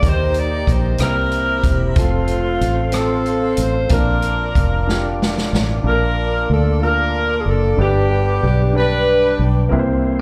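Slow gospel in a straight 6/8, uplifting and reverent, heard as a short cut from a longer live club performance through the venue's sound system with light reverb. A clear, close-miked saxophone section carries the melody with vibrato and slapback echo over a woody upright piano, a soft, flute-like tonewheel organ holding sustained chords through a slow rotary speaker, and a dark, round fingered electric bass up front. A punchy big-band drum kit with hi-hat, kick, rim click and snare plays a fill from 4.9 s and stops at 5.7 s, after which a subtoned alto saxophone with scooped notes enters in the background at 5.9 s.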